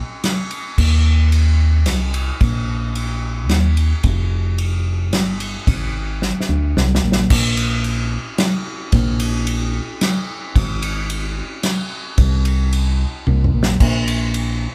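This short cut from a longer piece sounds like a band playing live together in one small room, with a moderate small-room reverb giving it a dusty, wistful air. It sits in folk rock and heartland rock, moving in a straight three-beat metre. Played with bundle sticks, the acoustic drum kit sits up front with dark cymbals, a medium-tuned snare and a tight kick, and it also uses ride, crash and toms. The fingered electric bass is equally forward, its tone dark and round, heard both direct and through an amp in a low register. Drum fills mark the turn into the second section at 6.2 seconds and arrive again briefly at 13.3 seconds.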